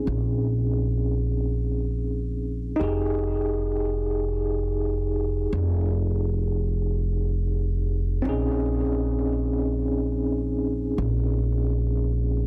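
In free time, this smoky, cinematic trip hop excerpt pairs a clean tine electric piano, its tremolo, tape echo and gritty vintage sampler texture heard through a combo amp, with a woody, pizzicato upright bass on steel strings, both up front in a dry, dense and heavily limited mix as the chords move from Bbm11 to Fm7 at 2.8 seconds and back to Bbm11 at 8.3 seconds.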